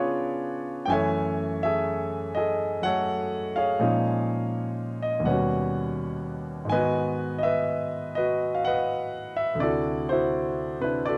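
A clear, natural concert grand piano sits up front, playing solo jazz at 83 BPM in a moody, late-night swing, its deep bass reaching down to D2 and its range extending up to G#5. Light reverb surrounds the instrument as it moves through rich extended harmony, from C#7b9 and F#m9 to an altered D#7 before settling on D9. This short passage lasts about 11.2 seconds and is cut from a longer piece.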